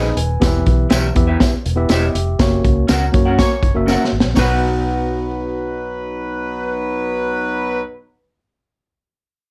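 With light reverb around it, this short cut from a longer uptempo 1960s-style soul track moves at 121 BPM in B major with an uplifting, warm mood. A crunchy, gritty breakbeat kit with a punchy kick and high-tuned snare sits up front over a dark, round, foam-muted fingered bass, while a clean tine electric piano and twangy, slightly broken-up guitar stabs fill out the harmony and a jingly tambourine rings in the background. A mellow, tightly octave-doubled horn section enters at 3.4 seconds, and after a band accent and a drum fill the drums stop at 4.5 seconds, while the horns carry the second line over the piano, guitar and bass as the harmony arrives on B.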